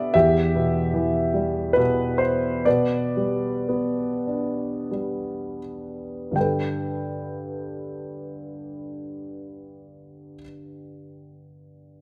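A warm, intimate concert grand piano opens this peaceful, calm classical fragment, playing a lyrical solo in 3/4 with rubato, its deep bass and audible action noise up front in a moderate recital hall, moving from E minor through G over B, slowing down until 6.4 s, then settling on a Gadd9 chord as a second section begins.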